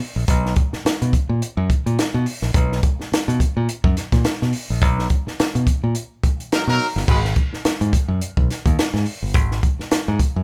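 A funk groove at 106 BPM in 4/4 with a light swing on the sixteenths, this cool excerpt from a longer piece rests on a bright, up-front fingered electric bass and a compact, dry cocktail drum kit with dark cymbals, a high-tuned snare and a punchy kick, over a Bmaj7 chord with little reverb and the feel of a band playing live in one room. A band accent runs from 4.8 to 7.1 seconds, and a warm horn section with light vibrato, distant and roomy in pop style, enters briefly at 6.5 seconds. At 7.1 seconds the harmony drops out and the second section begins.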